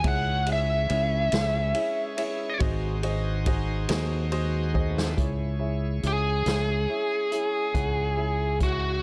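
Slow blues in 12/8, soulful and brooding, cut from a longer piece. A biting, overdriven lead guitar sits up front and carries a picked solo through the opening 5.2 seconds, playing over a C#m to G#7 change before the harmony returns to C#m. Beneath it, a fingered electric bass with a round, direct-and-amped tone anchors the low end. A vintage acoustic kit adds a punchy kick, medium-tuned snare, hi-hat and ride cymbal. A bright tonewheel organ holds sustained chords with key click, light overdrive and a slow rotary speaker, while a warm baby grand piano provides accompaniment and steps forward with a fill at 3.9 seconds, followed by a drum fill at 4.8 seconds, all within a small room ambience that gives the band a natural feel.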